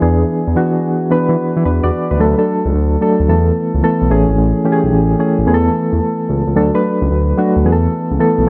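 Soft, round electric-piano-like synth keys sit up front in this bouncy, flirty slice of new jack swing R&B, their dark, gently decaying tone shimmering with chorus and tremolo as they voice the chords from E3 up to D5. Beneath them, a smooth synth bass with a mellow sawtooth edge and a touch of vibrato holds sustained notes from G#1 to E3, also placed close in the mix. Both parts play together from the start through 8.5 seconds at a relaxed 110 BPM in 4/4, with a triplet-feel swing on the sixteenths that gives the groove its easy strut. The harmony opens on E7, then shifts at 2.2 seconds into a new passage that moves through D, Esus4 and a lush Amaj7 before circling back through Esus4, D and Esus4 once more. A light reverb lends the short clip, cut from a longer piece, a polished, intimate sheen.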